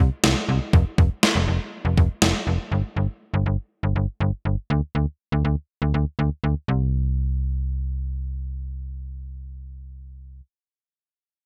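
A slap-like FM bass leads this cool, driving synth-pop excerpt at 121 BPM, its snappy, metallic attack sitting up front as it runs from 0.0 to 10.4 seconds in a low register. A gated 80s digital drum machine joins only briefly, from 0.2 to 2.3 seconds, with a thumpy kick and a gated-reverb snare that sounds tape-warm and re-recorded in a small room. The bright 1980s-style digital production carries a light reverb, and the piece moves into a new section at 6.7 seconds.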